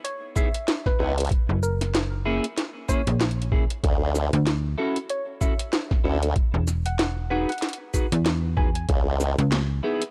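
A woody, wave-folded pluck melody with chorus and tape echo opens this playful, funky glitch hop excerpt alongside a layered electronic drum kit of cracking snare, metallic hats and shaker, soon joined by twangy, clean electric guitar stabs pumping under sidechain, a gritty, thumpy pitched-down kick, a sawtooth wobble bass with a formant filter and tube saturation from 1.0 s, and a snappy FM slap bass from 1.5 s, the swung, dry mix moving through C#m7, F#9, Dmaj9 and Emaj9.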